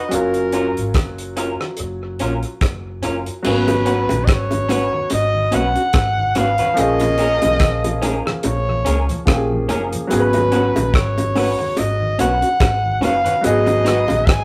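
A relaxed 72 BPM lovers rock reggae groove in 4/4 rolls along with a lazy sixteenth-note swing, carried by a damped 70s drum kit that sits up front with a tight kick, rim clicks, hi-hat and dark crash cymbals, its dry sound thrown into dub echo. Beneath it, a vintage foam-muted fingered electric bass adds a round, punchy low end, while an electric guitar through a small old amp drops slightly broken-up, lo-fi stabs. A clear grand piano lays down the accompaniment in G# dorian, moving from F#maj7 through G#m11 and A#m7 and settling on G#m7. In front of it, a close-miked flugelhorn sings the melody with pop-style vibrato, giving this bittersweet excerpt its sense of longing. Tight, high-tuned bongos join at 3.4 seconds, and a mellow, flute-like tonewheel organ on a slow rotary speaker enters just after at 3.7 seconds, both tucked into the background of a rough rehearsal-room recording, with tube saturation and a wet reverb.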